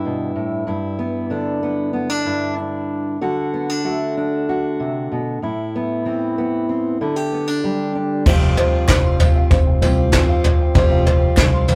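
Heard in a rough rehearsal room with a modest small-room reverb, this excerpt of nostalgic indie folk at 95 BPM opens on an up-front fingerpicked steel-string acoustic guitar, warm with audible finger squeak, playing alone for the first 8.3 seconds before dropping out at 10.8 seconds. At 8.3 seconds the arrangement builds as a boxy, shimmering octave-doubled twelve-string guitar, a very quiet upright piano with audible action noise, a second dark, woody upright piano playing high arpeggios, a round, foam-muted electric bass in the background and an up-front brush drum kit with dark cymbals and a punchy kick all enter. A crisp, saturated group handclap and a jingly, vintage tambourine join very quietly at 8.9 seconds.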